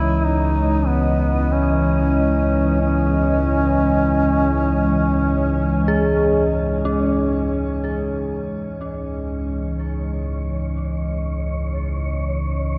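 Unfolding in free time, this vast, ominous dark ambient drone opens on a C#madd9 chord. A warm, vibrato-laden duduk sings a scooped, folk-style solo melody up front until 6.7 seconds, drenched in shimmer reverb and tape echo, over a deep rumbling drone, a moody sawtooth analog pad with sub octave, chorus and phaser, eerie inharmonic FM bell arpeggios, and an airy, breathy wind-like noise texture in the background, all soaked in lush hall reverb.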